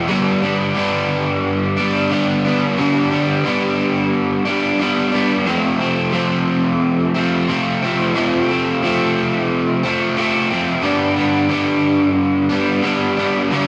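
A straight 4/4 pulse at 89 BPM carries this short rock fragment, cut from a longer piece, and its mood is dreamy and wistful. A single overdriven electric guitar is the only part, playing a picked solo from start to finish over 13.7 seconds and ranging from F2 up to D4. The harmony moves from G to F at 5.5 seconds and returns to G at 10.8 seconds. Double-tracked, compressed and placed up front, the guitar has a lush chorus shimmer and a slapback echo that give its warm, overdriven tone a hazy sheen. A moderate scoring-stage reverb opens a sense of space around the guitar.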